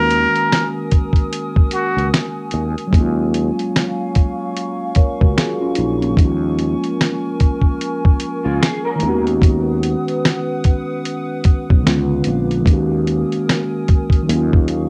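A gritty, sampler-style drum kit with a thumpy kick, fat snare, hi-hat and finger snaps anchors this melancholic, nostalgic lo-fi hip hop excerpt at 74 BPM in Eb minor, swung on the sixteenths and dusted with cassette tape. A plunger-muted trumpet opens with a short jazz phrase of scooped, vibrato-laden wah-wah notes that ends by 2.1 seconds, while a round fretless bass and a mellow, clean tine electric piano carry the chords beneath a dark, warbling pad washed in chorus, phaser and reverb. A slightly broken-up electric guitar through a small old amp slips in briefly from 8.4 to 9.2 seconds with ensemble chorus and analog delay, and the whole excerpt has the light reverb of a home cassette recording.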